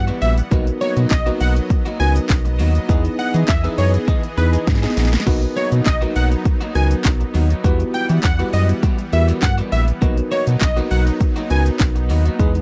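A straight 4/4 house beat at 101 BPM drives this carefree, upbeat dance-pop passage in B major. The overdriven drum kit sits up front, with a punchy kick, cracking snare, bright hi-hats, handclaps, shaker and crash cymbal, and a drum fill at 4.7 seconds. A round, deep analog bass with a dark, sustained tone is prominent in the mix, sharing sidechain pumping with the lush, detuned supersaw pad, the mellow tine electric piano and the lead. The plucky unison lead carries a catchy melody shaped by a filter sweep and slapback echo before stopping at 11.6 seconds, while the worn, slightly out-of-tune electric piano supplies clean accompaniment. An electric guitar at the edge of break-up plays a picked, compressed riff with subtle chorus, and a barely audible downlifter opens the passage. The chords move between Emadd9, Bmaj7 and Emaj7 in a dry, close recording with a 1970s studio character.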